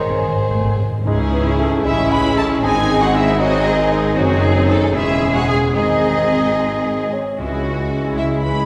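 A timpani fill opens this dramatic classical fragment, cut from a longer fast romantic movement for symphony orchestra in C# minor, set in a restless 6/8 at around 72-79 BPM in dotted quarters with a free, rubato feel. From the start, a dark, expressive violin section carries the melody in the background, joined by a rich, focused studio violin section, an airy wooden baroque flute, a shadowy cor anglais and a very quiet clarinet on second lines. A mellow, vintage-toned bassoon and a viola section with portamento supply accompaniment, while smooth, even cellos and soft-attack double basses anchor the bass and a tight, very quiet French horn section holds sustained chords. At 1.1 seconds the harmony resolves from G# to C# minor as a distant, roomy trombone section adds sustained chords and a tuba deepens the low end. The timpani, struck with medium mallets on calf heads, return briefly at 7.4 seconds as the harmony settles back on C# minor. 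The whole orchestra sits in a church or concert hall with a long, wet reverb that heightens the urgent, lush sweep of the strings.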